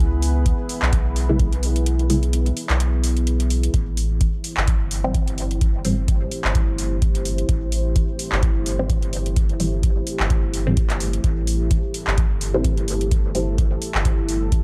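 A moody, detuned sawtooth pad, mellow beneath its chorus, built-in reverb and 12-bit sampler grit, opens this deep, meditative dub techno excerpt alongside a soft, round sub bass, both pumping to the sidechain. A deep analog kick and an overdriven house kit of handclaps and metallic hats with dub echo give the groove a gentle 16th-note swing. Muted, nasal filtered chord stabs with phaser and dub echo surface from 1.3 s, and the kick drops out at 1.9 s, returning at 3.7 s as the harmony shifts from C#m7 to Am7.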